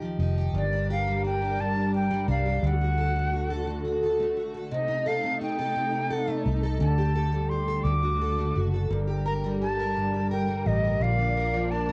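A home cassette recording with moderate studio reverb gives this short cut from a longer piece a close, slightly worn sound. It is a melancholic, dramatic pop ballad in G minor, moving in a slow six-eight at 57 beats per minute with a straight feel. A double-tracked, picked steel-string acoustic guitar sits up front, boxy with audible finger squeak, beside a round, punchy electric bass played with the fingers and foam-muted for a dark, amped tone. From 0.5 seconds a dark, lush string section holds bowed chords in the background, woody with a smooth top and vibrato. At 0.6 seconds a bright concert flute takes the melody, airy and close-miked with a soft attack, expressive vibrato and a cassette-tape colour of its own. The harmony opens on Ebadd9 before settling into Gm, D and Adim/C, passes through Dsus4 and D, and returns to Gm before closing on Bb.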